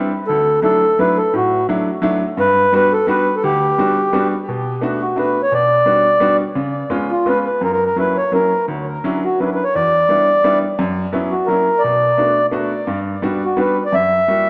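A dark production in a moderate recital hall reverb frames this charming, whirling musette waltz, cut from a longer piece and moving at 172 BPM in 3/4 with a gentle swing. A reedy, close-miked accordion carries the melody up front with a touch of tape echo, while a woody, bright upright piano supplies the accompaniment from the start. The tune opens in G major and turns to B minor at 4.5 s, where chords such as Bm7, C#7 and F#7b9 colour the second section.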